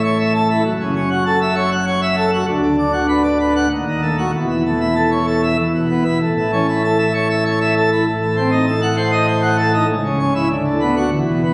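Captured on a phone in a recital hall, with a wet, lingering reverb and compression giving it a club-like glow, this 11.5-second fragment of a jubilant, majestic organ toccata in A major at 98 BPM in 3/4 features a solo pipe organ placed up front on a full plenum with brilliant mixtures and a romantic voicing, ranging from C#1 to F#5 as it moves from A through F#m7, D#dim, Adim7 and C#m before reaching Bm7/D as the excerpt cuts off.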